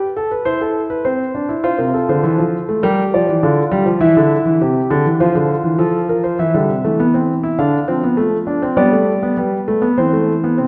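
Classical music in a baroque-style three-part fugue, this short excerpt is cut from a longer piece and moves at a stately 101 BPM in a straight 4/4. A solo grand piano carries all of it, spanning C3 to F5 with a warm tone that sits up front in the mix. The piano is placed in a recital hall with a wet reverb lasting about 1.5 seconds, and the listener seems to hear it from further back in the room. The harmony moves through chords such as F, Gm7, Dm7 and G before settling on C/E at 10.0 seconds. The tuning sits slightly low, with A4 at 437 Hz, and the overall mood is elegant and stately.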